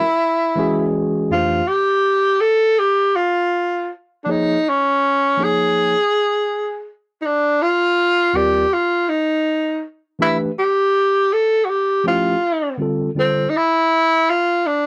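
This hip hop excerpt has a cool, mellow mood, set in 4/4 with a swung sixteenth-note feel. A breathy tenor saxophone carries the melody in a jazz style, whispered and intimate, with subtone, vibrato, scooped notes and a soft attack. Beneath it, a clean tine electric piano plays the accompaniment, its mellow tone heard through built-in speakers and sitting up front. The piano stops at 13.5 seconds, and the saxophone plays on alone until 14.9 seconds. The harmony drifts through lush extended chords such as Fmaj7, Ebmaj9 and Dm9. The whole recording is dry and gritty with little reverb, carrying the character of cassette tape.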